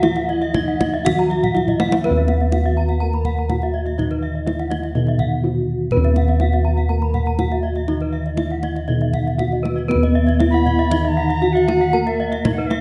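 Round, bright bronze bossed gongs sit up front and anchor the bass of this brilliant, hypnotic Balinese gamelan excerpt in Eb pelog, moving at a steady 121 BPM in a straight 4/4. Ringing bronze metallophones in paired tuning fill out the texture with shimmering beats: mellow, padded-mallet tones carry the melody and the lower accompaniment, while horn-struck metallophones add bright arpeggios higher up. A deep, close and dry kendang plays a fill from 1.4 to 2.0 seconds, and an airy, chiffy alto recorder with vibrato adds a second line at the start and again from 10.5 seconds, all within a moderate concert-hall reverb.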